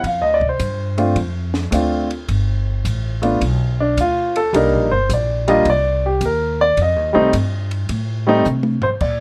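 A swinging, playful jazz piano trio opens with a polished, up-front grand piano soloing over a woody, growly pizzicato upright bass and a dark, smooth cocktail drum kit with a high-tuned snare and punchy kick, moving through Dm7, G7, Cm7 and F7 in a dry sound until a drum fill arrives at 8.5 seconds.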